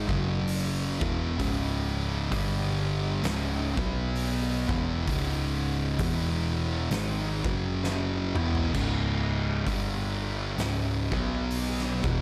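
Stoner and doom metal moves at a slow, swung 65 BPM in C# minor, and the mood is ominous and hypnotic across this 12-second cut from a longer piece. Two thick fuzz guitars carry the riff from the start, one sitting up front with a warm, distorted tone and the other set back in the background with a darker edge. Beneath them, a hollow-body short-scale electric bass plays low and picked, its round, punchy sound thickened by tube saturation. An oversized, low-tuned acoustic drum kit enters at 0.1 seconds with a boomy kick, fat snare, toms, hi-hat and dark crash and splash cymbals, its big, pumping room sound gritty and saturated, and a drum fill lands between 7.8 and 8.7 seconds. The riff cycles through F#5, C#m, G5, C#5 and B5, returns to C#m, then moves on to E5 and G#5, while a small room ambience gives the whole mix a close, enclosed feel.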